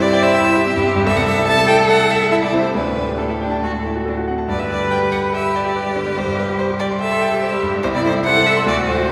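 A generous concert hall reverb, with a 2.2-second decay, wraps this short trio passage in the resonance of a church or large hall. It is a quick classical-period movement at 144 BPM in 4/4, played with a graceful, cheerful character and rubato, and tuned to A4 = 441 Hz. The single warm violin carries the melody up front, bowed smooth and even with light vibrato, ranging from A4 to A5. Beneath it, one cello plays a rich, focused second line between C4 and B4, its bowed tone carrying vibrato with a smooth top. A clear, natural-sounding grand piano sits up front with the accompaniment, spanning C2 to C6 as the harmony moves from C through Am/C, Dsus4 and D to G, then back to C and Am/C. All three instruments play throughout the passage from 0.0 to 9.1 seconds, which is cut from a longer piece.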